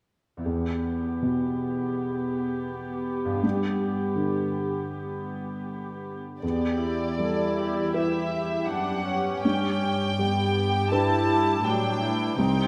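Bittersweet and moving, this excerpt from an emotional, cinematic film score in E minor unfolds at a rubato 81 BPM, opening with ringing, thumb-plucked concert harp arpeggios, a felt-muted upright piano and a dark viola section bowing sul tasto with light vibrato, before a smooth-topped violin section takes the melody and a cello section enters on the bass at 6.4 seconds, all within a concert hall's lingering reverb.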